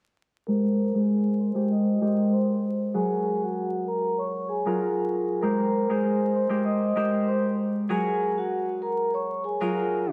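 Boom-bap hip-hop with a soulful, nostalgic swing, where an up-front Celtic harp plays mellow fingerpicked accompaniment under a metallic, ringing soft-mallet vibraphone melody with slow motor vibrato and a diffuse ambient delay, both moving between Abmaj9 and Gbmaj9 through a filter sweep in a dreamy mix soaked in lush hall reverb, vinyl crackle and a tape stop.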